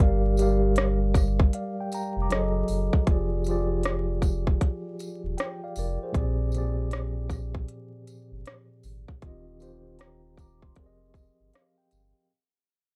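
Lo-fi hip hop in F dorian at 78 BPM with a swung 16th feel, melancholic and nostalgic, cut from a longer piece and fading out across its 12.3 seconds. A mellow tine electric piano with a cassette-tape tinge carries jazzy chords such as Gbm69, Bb13 and Fm11 over a deep, sine-like sub bass with an octave layer. An overdriven electronic kit with a tight kick, crisp hats and rim clicks enters at 0.4 seconds alongside a jingly tambourine tucked far back, all under light reverb and vinyl crackle.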